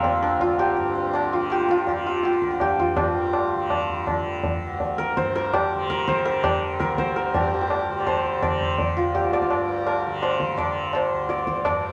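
A santur, a tanpura drone and tabla all sound from the opening moment of this solemn, introspective Hindustani classical fragment in raga Malkauns on D, tuned to A4 = 436 Hz, moving in 3/4 at 165 BPM and speeding up throughout. The hammered, ringing santur sits up front carrying the melody from Bb3 to D5, while the softly plucked, buzzing tanpura hums low beneath it with a shimmering glow and the high-tuned tabla taps out strokes with a short ring. The music shifts into a new section at 7.3 seconds, all set in a generous studio reverb.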